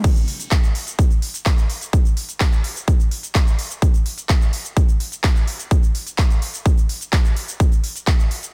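The sound is dry and dense, with a heavily limited modern master. This short cut from a longer EDM track moves at 127 BPM in a straight 4/4, carrying an anthemic, uplifting mood. A punchy, tape-warm electronic kick drum sits up front, layered and produced with the character of a large room, and it drives the groove until 8.2 seconds. Behind it, a big-room dance drum kit of cabasa, crash cymbal, handclaps and crisp hi-hats runs from the start to 8.5 seconds. That kit is overdriven for a gritty edge and sits lower in the mix than the kick.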